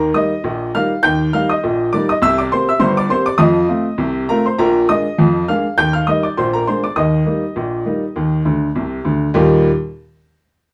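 A clear, woody upright piano sits up front in a moderate studio reverb, playing a playful, cheerful solo ragtime passage in a lightly swung 2/4 over a progression from Eb through C7, F7 and Bb7, with a short fill at 8.5 seconds before the piano stops at 9.7 seconds.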